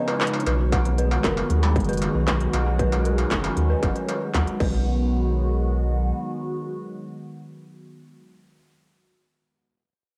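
Hazy and lo-fi, with a light reverb and the soft wear of a home cassette recording, this short IDM excerpt in B major moves at 116 BPM with a wistful, playful mood. A swirling, nasal phased analog pad holds sustained chords from the start, joined by a very quiet flickering grainy texture, an eerie, warbling detuned synth bell playing arpeggios through chorus and tape echo, and an industrial drum kit of crisp hi-hats, handclaps, crash cymbal and struck metal. A round sub bass enters at 0.5 seconds and a distorted, overdriven electronic kick at 0.7 seconds. After the drums, bell and texture stop near 4.7 seconds, the pad and bass carry on until the bass drops out at 6.1 seconds, and the pad fades at 8.2 seconds.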